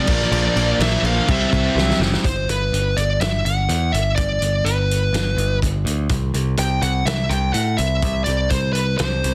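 Quiet-loud alternative rock at 124 BPM in 4/4, this bittersweet, cathartic passage is cut from a longer piece. It opens with three picked electric guitars in the background playing a riff over Bb and C chords: a raw, lo-fi, double-tracked garage guitar with overdrive, a thick fuzz guitar, and a tight, bright distorted guitar. All three stop at 2.2 seconds. Up front, a smooth overdriven lead guitar carries the melody throughout with a slapback echo. A growly, punchy picked electric bass, also up front, joins from 0.1 seconds with a direct, bright tone. The loose indie drum kit has a fat snare, punchy kick, crash, and hi-hat, with a saturated, gritty sound and a rolled-off top. The drums play a fill into 2.2 seconds, where the music drops into half time over G and then C, under light reverb and a dense, heavily limited modern master.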